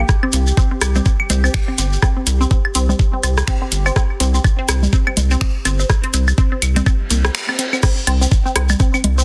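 A squelchy, detuned blip pluck riff with chorus, phaser and tape echo opens this quirky, hypnotic minimal techno excerpt at 124 BPM with a 16th-note swing, over a round, deep analog bass and a bubbling stepped-filter texture in the background, all three pumping against the sidechain. A knocking, overdriven electronic kick sits up front, joined by tape-warm rim clicks, woodblock, claves and congas, a grainy close shekere, and a garage kit of metallic hi-hats, finger snaps and crash cymbal. A reverse cymbal rises in from 7.0 seconds through a band accent at 7.3, and the texture stops as the drop arrives at 7.8 seconds in a dense, heavily limited, dry mix.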